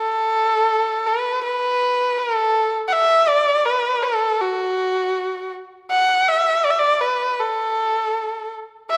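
Pastoral and graceful, this 9-second cut from a longer Chinese traditional piece features a single bowed erhu played solo and up front at a rubato 80 BPM, its nasal, focused tone colored with vibrato and portamento as it moves between F#4 and F#5 in a recital hall with moderate reverb.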